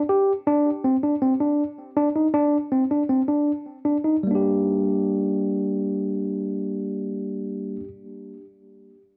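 An overdriven tine electric piano, gritty and up front through a combo amp with tape echo, plays alone from 0.1 to 7.9 seconds in this driving, brooding progressive instrumental fragment at 159 BPM in a straight 5/4 in G minor, moving from Csus2 to Gm at 4.2 seconds within a short, wet studio reverb.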